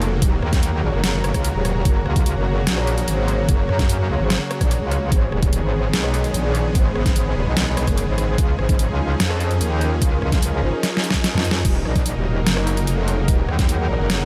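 Chaotic and menacing, this half-time heavy wobble dubstep excerpt is driven by an up-front metallic wobble bass, aggressive, saturated and chorused, and a knocking, overdriven electronic kick that enters at 0.2 s, alongside a layered dubstep drum kit with deep snare, bright hats, rim clicks and crashes that breaks into a fill at 10.8 s, while a lush, detuned supersaw pad sustains pumping chords and an ethereal, airy pad drifts in the background with ensemble chorus and its own reverb.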